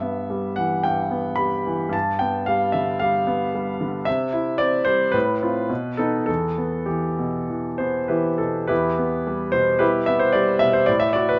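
Passionate and brooding, this short passage cut from a longer romantic character piece for solo piano moves in E minor at a rubato 98-115 BPM, with an up-front, brilliant concert grand ranging from deep bass to bright highs, passing through harmonies such as G7, C and B7 before settling on E minor around 6.3 seconds, all set in a moderate stone-room reverb with a faint mains hum beneath.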